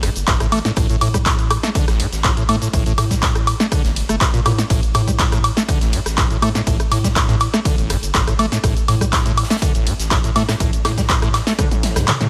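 Trippy and driving, this excerpt of straight 4/4 acid house at 122 BPM rides a squelchy, resonant square-wave acid riff with tube saturation, subtle chorus and vintage 12-bit sampler grit, over a round, deep analog bass with sidechain pumping sitting in the background, a punchy up-front analog drum machine of handclaps, hi-hat, ride, rim click, shaker, snare, toms and woodblock in studio reverb, a dry electronic kick from 0.3 to 11.7 seconds, a very quiet, gritty low-tuned acoustic kit of hi-hat and fat snare in a big room, and a drum fill closing from 11.6 seconds.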